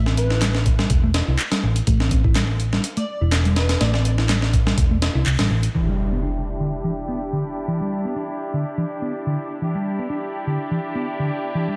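Raw and energetic, this swung breakbeat cut opens with a gritty, pitched-up sampler kit with a thumpy kick and high-tuned snare, overdriven layered handclaps, a dark, round hollow-body bass and a filter-swept picked electric bass riff beneath a glassy, detuned pluck melody in the background, until at 5.7 seconds an up-front impact lands, the kit and hollow-body bass stop, and soft-attack chamber string stabs with 12-bit grit, their own filter sweep and tape echo float over the continuing riff.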